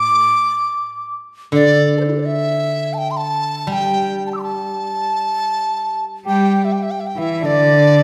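A large bamboo dizi carries the melody up front, its buzzing membrane lending an airy, straight, tongued tone to this wistful, tender fragment of a Chinese chamber piece, which moves in a free rubato around 76-84 BPM in 4/4. A steel-string zither played with fingerpicks rings out silvery accompaniment until 5.9 s. At 6.3 s a smooth, bowed cello with rich vibrato and a reedy, mellow accordion enter as second lines, all heard in a resonant concert hall.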